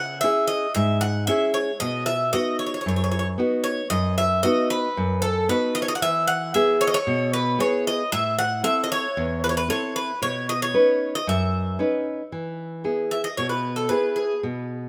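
A bright, metallic Greek bouzouki carries the melody over a dark, full-bodied nylon-string guitar that fingerpicks the accompaniment, both up front from the opening of this hopeful Greek folk excerpt in E major at 114 BPM in a straight 4/4. The harmony moves from C#m through B, E, Am and Badd9, and the bouzouki's picked double strings, some doubled at the octave, ring against the guitar's deep classical tone. A new section arrives at 12.3 s on an E chord, where the bouzouki stops at 14.4 s and the guitar rings on alone to 14.9 s, all held in a moderate plate reverb with a warm glow.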